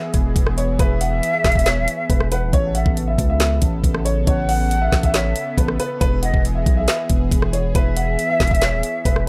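A dark, boxy baby grand piano carries a worn, intimate melody with audible action noise over a smooth, detuned sawtooth pad with chorus, opening this dreamy, wistful half-time trap excerpt in E major at 138 BPM. A deep, sine-like 808-style bass and an up-front electronic drum kit, with knocking kick, woody snare, metallic hats, handclaps and rim clicks, arrive at 0.1 seconds, while an airy, distant concert flute with vibrato and analog delay adds an expressive second line from 0.8 seconds. The chords move from E to Aadd9 and back to E in a dry, gritty hardware recording with transformer saturation and little reverb.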